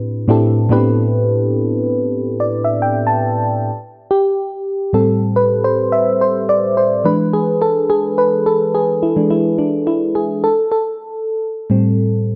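R&B with a sultry, soulful mood, this swung excerpt features a lone mellow FM electric piano, soft, round and warbling with a vintage chorus shimmer, playing a fill from 2.0 seconds before taking a solo at 3.7 seconds over Am11, E7 and Am7 chords in a dark production with light reverb.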